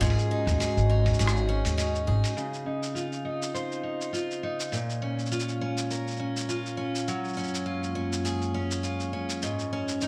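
A short, playful folktronica excerpt in Db major at 102 BPM opens with a bright, full-bodied picked steel-string acoustic guitar playing up-front arpeggios with audible finger squeak, over a dark, warbling, nostalgic tape-like pad with chorus, a woody, growly pizzicato upright bass that drops out at 2.2 seconds, a muffled, thumpy electronic kick in the background that stops at 1.2 seconds, and a compressed lo-fi sampler-style kit of cabasa, hi-hat and rim click in a swung groove, all set in a dreamy, reverb-soaked mix as a filter sweep washes over the pad from 2.4 seconds through chords moving from Dbmaj9 to Bbm7 and Gbmaj9 before returning to Ab7sus4.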